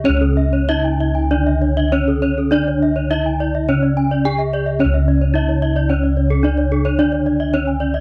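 A ceremonial, shimmering Balinese gamelan passage, cut from a longer piece, opens with a horn-mallet bronze metallophone carrying the melody over up-front bossed gongs whose round, mellow tones hold the bass, while a bright horn-mallet metallophone spins high arpeggios, its paired tuning producing shimmering beats. From 0.1 s a second arpeggio metallophone struck with a wooden mallet joins, and a soft, dark metallophone played with padded disc mallets sits in the background as accompaniment, before the music moves into a new section at 4.8 s. The sound is dry and close, with a boxy small-room character and a 1970s studio feel.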